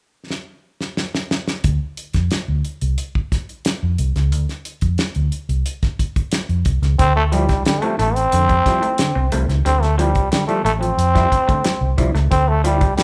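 A damped 70s drum kit opens this hypnotic D minor funk excerpt at 90 BPM with a fill from 0.3 seconds, its fat snare and tight kick dry and up front, before a dark, round, foam-muted electric bass joins on Dm7 at 1.6 seconds. At 7.0 seconds the harmony moves to Dm11 as a growling trombone takes the up-front solo melody, brilliant and raspy with light vibrato and a smooth top, while an overdriven clav adds stringy, percussive stabs through a phaser. A clean, warm fingered electric guitar riff sits in the background, and the whole band sounds live in one room under light reverb.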